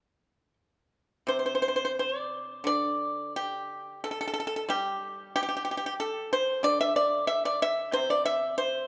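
Chinese traditional music for solo plucked strings, this short excerpt of a longer piece has a pastoral, flowing mood. A lone pipa, played with fingerpicks, carries everything from 0.0 to 8.9 seconds, moving in a free rubato that hovers around 83-94 BPM in 4/4. The melody sits in the D shang mode and spans from C3 up to E5. Up front, the instrument sounds acoustic, dry and percussive. A moderate concert hall reverb surrounds it, and the overall production leans dark, with a brief opening passage giving way to a longer second section at 1.3 seconds.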